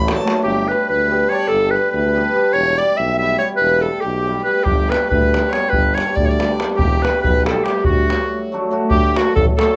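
Balkan wedding-band folk in an exuberant, virtuosic 5/8, this excerpt puts a bright, smooth-topped clarinet up front on the melody over a rich, floating violin second line played sul tasto, shimmering hammered cimbalom and a warm, distant solo tuba bass, while a tight davul sounds briefly at the start and returns at 4.7 seconds, the harmony moving through G, Em and D in a small room before a short break at 8.3 seconds.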